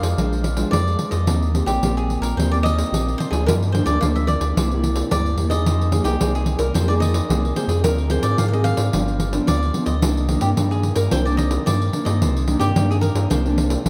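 A straight 4/4 samba and choro groove moves at 110 BPM in C minor, with a jingly pandeiro played with soft hands sitting up front, and a deep, smooth pure sine sub bass of fast attack and sustained tone anchoring the low end. A crisp, picked cavaquinho carries the lively, playful melody over a thumb-plucked nylon-string guitar with fresh strings and a dark classical tone, moving through chords such as Bb7, Gm7, Fm7 and Dm7b5 before settling on Cm9 at 10.0 seconds. The whole passage, cut from a longer piece, rings out in a vast, echoing cathedral space.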